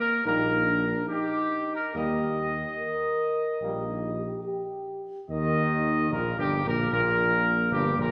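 Up front, a mellow trumpet section carries the melody in this triumphant, regal classical fanfare, a short excerpt cut from a longer ceremonial piece. Beneath it, a French horn section with light vibrato holds sustained chords from the start, joined at 0.3 seconds by a tight, bright trombone section and a smooth-topped tuba anchoring the bass. The brass rings out in the generous reverb of a concert hall, giving the stately ensemble a grand, spacious sound.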